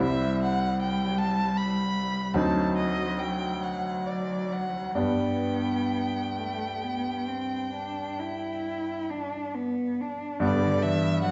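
Dark, reverberant recital-hall sound frames this serene, tender excerpt of a slow romantic piano-trio movement in a rubato 12/8, where a clear, focused violin sings the melody with vibrato over an expressive cello second line with soft attacks and portamento, while a bright, brilliant baby grand piano with long sustain supplies the accompaniment as the harmony moves from C through D7b9 to G at 5.0 seconds.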